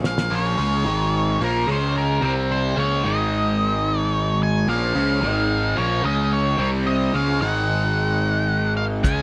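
Psychedelic rock at 110 BPM in a straight 4/4, this short excerpt from a longer piece has a dark, mysterious mood, its harmony circling Bbmadd9 with brief moves through Ab5, Db5 and C5. A cloth-damped drum kit opens with a quick fill over the first 0.3 seconds, thuddy and dry with a fat snare, tight kick and rolled-off top, then falls away until it returns at 9.0 seconds. A crunchy, double-tracked overdriven guitar carries a bright riff through a phaser, while a fuzz picked electric bass sits underneath with an overdriven, amped growl. Entering at 0.1 seconds, an octave-fuzz lead guitar plays a distorted melody with tape echo and plate reverb, its tone dark and fuzzy. Behind them all, a very quiet chamber string section holds sustained bowed chords with light vibrato and an earthy, rich character, all within a moderate studio reverb.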